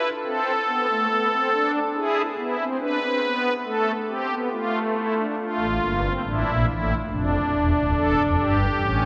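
Soaked in the long 4.4-second decay of a cathedral, this solemn yet driving short cut from a baroque-style four-part fugue in D minor at 70 BPM features a solo pipe organ voiced up front on soft, shimmering string celeste stops with a romantic cast, moving from A minor through E to a chordless stretch before landing on D minor as a new section begins at 5.4 seconds.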